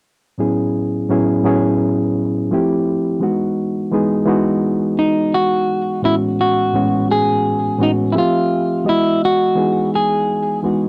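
Hip hop at 85 BPM with a swung sixteenth-note feel, this short cut from a longer piece carries a nostalgic, cosy mood over lush Amaj13, Fmaj7 and Emaj7 chords. A reedy, clean electric piano sits up front through its built-in speakers with a cassette-tape tint, playing accompaniment from 0.4 seconds, and a fingered semi-hollow electric guitar joins at 5.0 seconds with a hollow-bodied melody treated with tape echo. The whole recording has a dry, gritty hardware character with a touch of moderate studio reverb and cassette grain.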